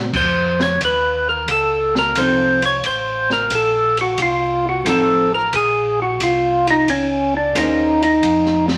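A fat, lightly overdriven tonewheel organ sits up front with the melody, its third-harmonic percussion and key click giving each note a percussive bite as a slow rotary speaker turns the sound. This smoky, soulful soul jazz organ trio, cut from a longer piece, moves at 89 BPM in 4/4 with swung eighth notes. Beneath it, a second tonewheel organ carries the bass line, round, dark and clean with vibrato and its own slow rotary speaker. An acoustic jazz kit in a studio room adds a high-tuned snare, boomy kick, hi-hat, ride and crash, and a clean electric archtop guitar enters at 2.2 seconds with picked, hollow-body accompaniment. The harmony moves from F7 to Bbm9 and back to F7, while wet studio reverb and vinyl crackle give the recording a worn, late-night patina.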